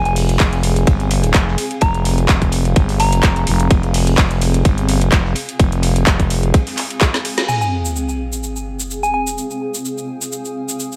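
A growling, thick FM bass sits up front with sidechain pumping beside a cloudy, evolving granular pad in this swaggering, gritty bass house excerpt at 127 BPM in F minor, joined by a garage kit with woody snare and metallic hats, a soft, pure synth bell with chorus and digital delay, a dark, dry reggae kit in the background, and a tight electronic kick, until a drum fill at 7.0 seconds gives way to a sub drop impact at 7.5 seconds.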